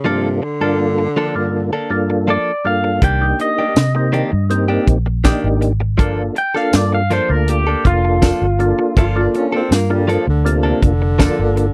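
A breathy, whispered tenor saxophone opens over a mellow tonewheel organ with key click, chorus vibrato and a slow rotary speaker, alongside clean, direct-recorded guitar stabs, before a twangy, slightly broken-up guitar through a small old amp takes the melody at 2.3 seconds and a dark, foam-muted bass and a tight funk kit with a high-tuned snare and tambourine arrive at 3.0 seconds, shaping a mournful, brooding straight-eighth soul blues in G minor at 81 BPM that moves between Gm9 and Cm9 in a dry, close 1970s-style studio sound, with the saxophone returning at 9.0 seconds.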